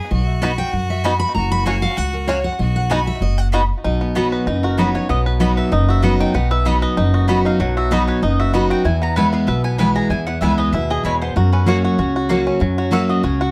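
A biting, lightly vibratoed fiddle line opens alongside an up-front dreadnought guitar solo in this lively, rustic bluegrass passage at 192 BPM with a swung feel in B major, while a thumpy, gut-strung upright bass settles in beneath, a twangy banjo with tape echo carries the melody, one mandolin adds picked stabs, and after the fiddle stops at 3.7 seconds a second, bright mandolin takes up a melody from 4.6 seconds, all captured close and detailed with light reverb.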